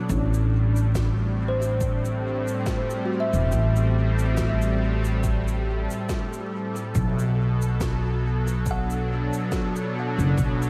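A lightly swung 70 BPM groove in 4/4, built on a layered, overdriven electronic kick and an overdriven shaker and woody snare trailing dub echo, anchors this deep, meditative ambient dub excerpt in A dorian. A growly pizzicato upright bass sits up front beneath a smooth, detuned sawtooth pad with chorus, a mellow kalimba enters at 1.5 seconds with ringing tape-echoed arpeggios, and light reverb and vinyl crackle surround the harmony as it moves from Am7 to Bm7 at 6.9 seconds.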